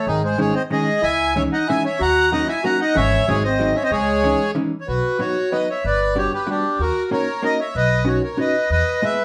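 Bittersweet and nostalgic, this musette waltz sets a reedy accordion with a slow beating up front on the melody, while a distant, roomy clarinet in classical style adds a second line until 4.5 s. Beneath them, a woody, thumpy pizzicato upright bass on gut strings holds the bass line and a dark, clean, fingered hollow-body electric jazz guitar with a compressed sound carries the accompaniment as the harmony moves into a second section at 4.9 s. The band plays live together in one room with a wet studio ambience, and the passage is cut from a longer piece.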